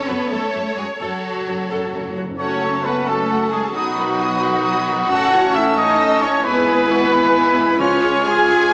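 Heard through a small speaker and bathed in a wet scoring-stage reverb, this swashbuckling, determined cinematic cue in F# dorian moves at 88 BPM in 6/8, opening with lush bowed strings: an intense symphonic violin section carries the melody over a warm second violin line in the background, close violas, expressive cellos with portamento and smooth double basses, while dry calf-head timpani add a fill in the background. At 2.4 seconds the winds and brass join: an up-front trumpet plays stabs, a mellow horn section holds tight chords, and a distant cor anglais, a very quiet clarinet and an airy flute group add second lines. The passage, cut from a longer piece, moves through F#m, B, A and E/G# before arriving on a C# chord at 7.8 seconds, where the timpani return.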